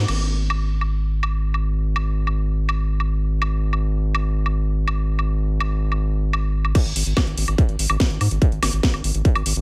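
Psychedelic trance in a straight 4/4, this short cut from a longer piece carries a psychedelic, alien mood. A round analog bass opens at 0.0 s on a band accent, deep and mellow, its square and sine tones wave-folded into an evolving, sustained line with a fast attack. A techno drum kit joins almost at once, layering a cracking snare, metallic hi-hats, crash cymbal and woodblock up front in the mix. At 6.8 s the drop arrives as a distorted electronic kick drum enters, layered and produced, sitting forward alongside the bass until 9.3 s. The dry sound, with little reverb, keeps every part close and direct.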